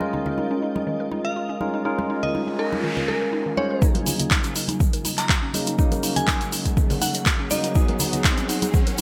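Deep and smooth, this deep house passage is cut from a longer piece and moves at 122 BPM in Eb minor with a light 16th-note swing. From the start, a woody, round synth pluck plays arpeggios in the background alongside barky, lightly overdriven tine electric piano stabs, ringing, close and dry congas and a cloudy, evolving granular pad, all breathing with sidechain pumping over chords that move from Bbm7 to Ebm7 and then Abm7. A glassy, crystalline FM bell carries the melody from 1.2 s, its chorus and delay adding shimmer, while a noise sweep creeps in from 2.3 s. At 3.8 s the build-up begins: a deep, layered electronic kick sits up front with a grainy tube shaker, and from 4.0 s a punchy analog drum machine adds handclaps and hi-hat through gated reverb, while a riser climbs and filter sweeps run on the electric piano and the pluck arpeggio. The bright 1980s-style digital production sits in a lush hall reverb.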